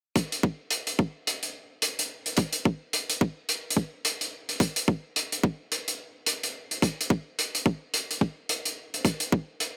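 A dry, up-front excerpt of playful, swaggering glitch hop in 4/4 with a swung sixteenth feel, built from a tight, layered, tape-warmed electronic kick drum under a high-pass filter and an acoustic hi-hat carrying a pumping studio room and a rolled-off top, both entering at 0.2 s, with the kick stopping at 9.5 s and the hi-hat at 9.7 s.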